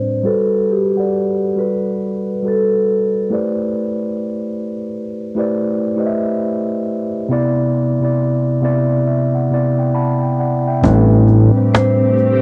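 A ringing, motor-off vibraphone melody and a mellow, up-front tine electric piano open this melancholic, nostalgic lo-fi hip hop excerpt at 68 BPM in A dorian with swung 16ths, both coloured by cassette tape and a low-pass filter sweep, with the piano playing a fill before a fat, detuned sawtooth bass with tube saturation and a snappy, close and dry cajon arrive at 10.8 seconds, followed by a blurred, evolving granular cloud pad with its own reverb at 11.5 seconds as the vibraphone briefly returns, the excerpt moving through Gmaj9, Am11 and Cmaj9 chords and back to Am11 in a lightly reverberant home-cassette sound.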